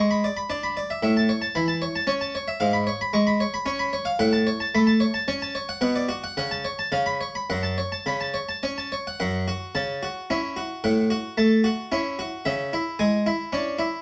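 Classical, a baroque-style suite movement for solo harpsichord in F# minor, this serene, radiant passage moves at 112 BPM in 3/4 with a flexible, rubato feel and is tuned to A4 = 442 Hz. The Italian-style harpsichord sits up front with a plucked, brilliant tone reinforced by octave strings, spanning F#2 to C#6 through harmonies that settle on F# minor at 7.5 seconds before a new section begins at 9.2 seconds and turns toward C# minor. A moderate studio reverb gives the instrument a clear sense of space in this 14-second portion cut from a longer piece.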